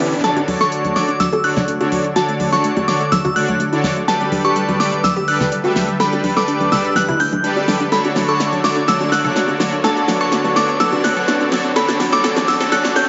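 A glassy, crystalline synth bell carries the melody from 0.2 seconds, its chorus and delay ringing over up-front, smooth supersaw stabs and a round analog pluck playing arpeggios in the background under a filter sweep, all moving through Dmaj7, Gadd9 and Em7 in D major. This uplifting, expansive progressive house build-up runs at 125 BPM in a straight 4/4, with an airy, breathy pad holding sustained chords, a very quiet riser, and a layered big-room drum kit whose huge snare and crisp hats play a fill throughout. Bright bongos and congas sit in the background, and a moderate room reverb gives this cut from a longer piece its sense of space.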